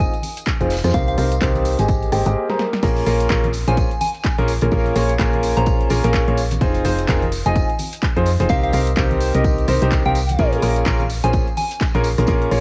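A soulful, bittersweet stretch of piano house, cut from a longer piece, moves with a swung sixteenth-note lilt in four. An intimate baby grand piano sits up front playing the riff, its action noise audible and its long sustain softened by a low-pass filter, cassette tape and tape echo, while a round, dark FM bass pumps beneath it against the sidechain. A punchy, layered electronic kick and a house drum kit of crash, handclaps, hi-hat, rim click and snare hold the groove, joined by a very quiet tambourine and congas struck with hard hands and a dry, damped 70s kit with a fat snare set in the background. A pure, gentle synth bell drifts in at 0.9 seconds, carried by chorus, phaser, 12-bit sampler grit and tape echo, over chords that turn from Fm7 through Cm7 and Abmaj7. An electronic swell enters at 2.0 seconds, leading into a brief break and drum fill before the drop lands at 2.8 seconds on Bbm7, and the whole piece carries the light room sound of a cassette home recording.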